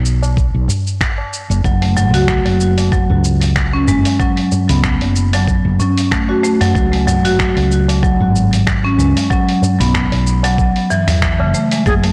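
A lightly swung 94 BPM groove in 4/4 anchors this meditative, mystical organic downtempo piece in F# minor, where a growly, woody fretless bass with tube saturation and sidechain pumping, a thumpy electronic kick, gritty sampler-style snaps, hi-hat and shaker, and high-tuned, dry tabla in the background carry the pulse while an up-front, hard-mallet marimba enters at 1.6 seconds with delayed arpeggios over B5, F#5, C#5 and Bsus4 chords, all bathed in lush hall reverb within a blown-out, overdriven recording, until an airy, chiffy cedar flute touches a single G#4 at 11.9 seconds as the cut ends.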